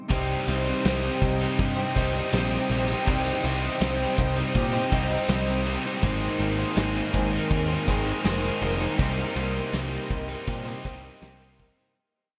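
A dreamy, reverb-soaked mix carries this short, melancholic shoegaze and dream pop piece in C minor at 81 BPM, moving from Cm to Abadd9 at 6.0 seconds and Cm7 at 9.0 seconds before fading out from 9.0 seconds. Two biting overdriven guitars play riffs, one treated with lush chorus and the other double-tracked with ringing chords, while a clean, compressed electric guitar with reverse reverb and a shimmering, octave-doubled twelve-string acoustic picking arpeggios through chorus and tape echo sit in the background. A growling, up-front picked bass with overdrive drives eighth notes beneath a loose indie kit with a fat snare and punchy kick in a pumping small room, while a jingly tambourine keeps a pattern in the background and an evolving, morphing wavetable pad with a slow attack and ensemble chorus sustains chords behind.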